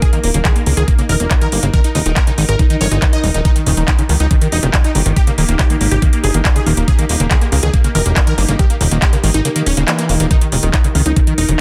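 A dense, heavily limited modern mix with light reverb frames this hypnotic, intense psychedelic trance passage, cut from a longer piece, where an up-front, knocking electronic kick and a layered drum kit of tape-warm handclaps and metallic hi-hats drive a straight pulse. A punchy, funky analog bass with a ring-modulated, filter-plucked edge sits up front, while a squelchy, aggressive acid line screams through distortion, chorus and delay in the background, and a detuned supersaw stab carries the melody through phaser, cassette tape and delay. Alongside them a morphing, warbling wavetable pad holds chords in the background with sidechain pumping, and the kick drops out from 9.4 to 10.3 seconds.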